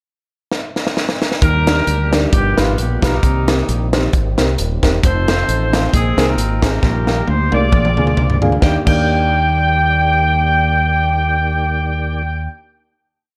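A lightly reverberant small-room sound frames this short, jubilant uptempo gospel piece in Eb major at 134 BPM, swung in 4/4. A crisp, roomy fusion drum kit with a high-tuned snare and punchy kick opens alone with a fill before driving a two-beat praise groove, and at 1.4 seconds a warm, distant horn section enters up front with call-like melodic motifs. Beneath it, punchy fingered electric bass walks and runs with chromatic approach notes, a dark, woody upright piano places close-voiced off-beat chords, and a very quiet pad of mellow French horns and round tonewheel organ with slow rotary shimmer holds sustained chords through a second drum fill into the final Ebmaj7 chord at 8.6 seconds.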